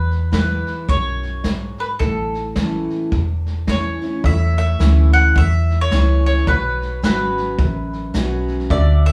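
Honky-tonk and classic country with a down-home, easygoing mood at 108 BPM in a swung 4/4, where a bright, woody mandolin carries the melody over a picked, full-bodied steel-string acoustic guitar with audible finger squeak, a dark, round, foam-muted electric bass sitting up front, and a brushed vintage kit with a tight kick and rolled-off top, while a slightly detuned, brilliant upright piano with audible action noise joins in the background at 4.2 seconds, all heard as a band playing live in one room with moderate studio reverb in this short excerpt.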